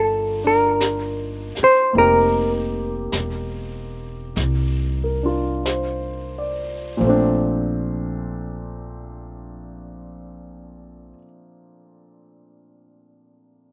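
A dark, clean hollow-body guitar carries the melody up front with a slapback echo, over a deep-voiced grand piano and a woody, thumpy pizzicato upright bass, while brushed drums with a high-tuned snare and hi-hat slip in at 0.8 seconds, also touched with slapback echo. This late-night, romantic jazz ballad swings gently and slows through its opening passage, moving from a rootless Cm11 to F7sus4 before settling on Bbmaj9 at 7.0 seconds. In the dry outdoor sound the guitar drops out first, followed by the drums and then the bass, leaving the piano ringing on alone until 13.7 seconds in this fragment of a longer piece.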